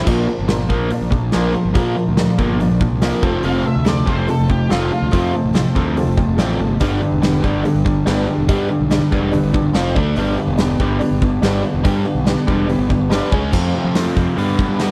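A small room sound frames this swaggering, driving slice of classic rock at 143 BPM, led by a huge arena drum kit up front with bright cymbals, a punchy kick and a pumping hall feel, alongside two overdriven, picked electric guitar riffs, the one treated with phaser sitting further back. A round, fuzzy fingered bass adds grit beneath, while a jangly, detuned honky-tonk upright piano and a boxy, swing-style acoustic guitar fill the background, the piano slipping in brief fills around 5.5 and 9.5 seconds. A dark octave-fuzz lead guitar cuts in briefly at 3.5 seconds, and the chords move through Bb, F and G before turning to Fadd9 and Gadd9 near the end.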